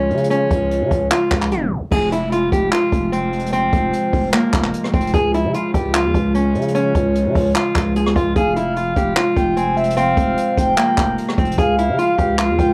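A bright fingerpicked steel-string acoustic guitar carries the melody over a soft, warbling chorused pad and a growling, saturated 808-style bass, joined at 0.1 s by an up-front jazz brush kit with a boomy kick, hi-hat, rim clicks, handclaps and crash in this dark, eerie half-time trap hip hop cut from a longer piece at 149 BPM in F minor, where a tape stop at 1.5 s gives way to a dry, gritty small-room groove moving between Db and F minor until a breathy, flute-like synth lead with vibrato and delay adds a second line from 8.4 s.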